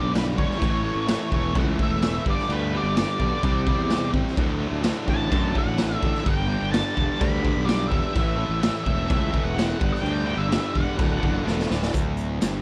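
Classic rock with a confident, swaggering straight feel, built on a double-tracked, overdriven electric guitar riff and a growly fuzz bass, with a dark octave-fuzz lead guitar melody carrying slapback echo, a very quiet shouting tonewheel organ with key click and slow rotary sustaining chords underneath, and a boomy, saturated garage drum kit with dark cymbals up front that plays a drum fill at 11.5 seconds in a dry, close sound.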